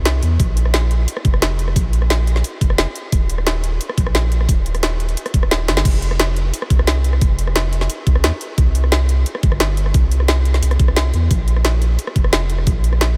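A light reverb gives this short liquid drum and bass clip, cut from a longer piece, a soft, dreamy glow. A deep, round sine sub bass sits up front, its fast attack giving way to sustained, warm low notes that span from Eb1 to F2 and run the full length of the clip. Above it, a layered, produced drum kit in straight 4/4 brings a woody snare, bright hi-hats, rim clicks and crash cymbals, all overdriven and placed close to the listener. An electronic kick, also layered and overdriven, adds a knocking punch from 0.4 seconds. The kit breaks into a fill at 5.7 seconds.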